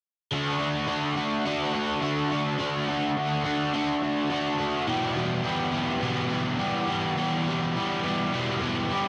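Rock in D major at 105 BPM in a straight 4/4, this short passage cut from a longer piece carries a blissful, hazy mood. A single crunchy overdriven electric guitar plays alone from 0.3 to 9.1 seconds, picked and double-tracked, sitting up front in the mix. Its bright tone ranges from E2 to G4 and is coated in a lush chorus. The harmony moves from D to Em at 4.9 seconds. A light reverb and the soft grain of a home cassette recording give the sound a dreamy, lo-fi character.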